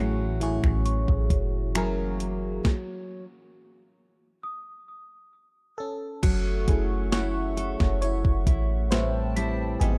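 Sensual and longing, this dark contemporary R&B excerpt sets a glassy FM electric piano with chorus and phaser over a hollow, airy pad, fingerpicked nylon-string guitar arpeggios with tape echo, a deep, boomy 808-style bass and a thumpy, up-front 12-bit drum machine that enters at 0.4 seconds, while a delicate, slightly out-of-tune celesta with tape echo joins at 0.9 seconds, and after a stop from 2.6 seconds the electric piano takes a solo at 6.2 seconds.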